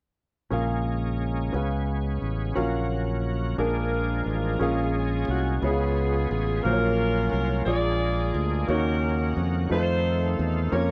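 Gospel in 6/8 at a slow 59 BPM in Bb minor, this solemn, soulful fragment opens with a clear concert grand piano, a growly, punchy fingered electric bass and a bright tonewheel organ holding sustained chords through overdrive, chorus vibrato, key click and a slow rotary speaker. A mellow saxophone section with light vibrato and tape echo takes up the melody at 3.6 seconds. The chords move from Bbm7 through Db7 and Gbmaj7/Bb to Bb7, then close on Ebm7 and F7, all in a dry, close 1970s-style studio sound.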